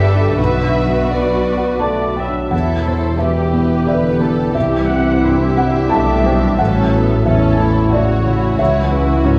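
A wet, churchlike hall bloom wraps this tender, moving cinematic excerpt in a rubato 3/4, where muted violin sections carry the vibrato-laden melody and a lush second line over con sordino violas, a background cello section and distant double basses. A felt-muted upright piano adds intimate accompaniment with audible action noise, while a concert harp rings with fingerpicked arpeggios in the background. A dark, distant French horn section enters at 1.8 s with sustained chords as the harmony moves from Bm through Em, C and A to C#m.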